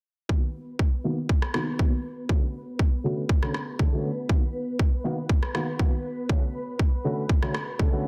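A punchy, tape-warm electronic kick drives this sunny, feel-good filtered disco house passage, with an up-front baby grand piano accompaniment coloured by phaser, vintage 12-bit sampler grit, sidechain pumping and a low-pass filter. A lush, sawtooth string machine holds mellow sustained chords with ensemble chorus, and a soft-clipped electronic rim click enters at 1.4 seconds. A filter sweep runs across the whole passage over a Bmaj7 to Dmaj7 progression, all inside a dense, heavily limited mix with light digital reverb.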